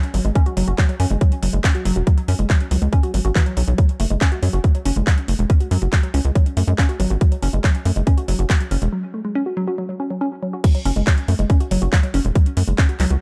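A straight 4/4 pulse carries this dark, alien psychedelic trance passage, cut from a longer piece, with an up-front, tight electronic kick and a techno kit of crash cymbal, handclaps and metallic hi-hats. A punchy sawtooth-and-square sequencer bass drives underneath, while a woody, wave-folded pluck riff with a noise layer and a moving notch filter pumps through chorus and tape echo. After a break at 8.9 seconds, the drop lands at 10.6 seconds in a dry, warm mix.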